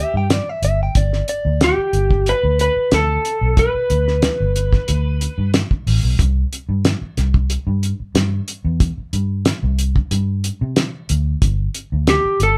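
Rollicking and gritty, this short straight-eighth soul blues excerpt features a dark, slightly broken-up electric slide guitar played with fingerpicks carrying the melody until 5.5 seconds and returning briefly at 12.1 seconds, while a bright, clean, direct-recorded electric guitar adds a picked second line only through 1.6 seconds. A round, punchy, foam-muted vintage bass holds the low end throughout, joined at 0.3 seconds by a cloth-damped, thuddy drum kit with a fat snare, tight kick, hi-hat and a rolled-off top. The band sounds live in one room with light reverb, the drums, bass and slide guitar sitting up front and the guitars compressed.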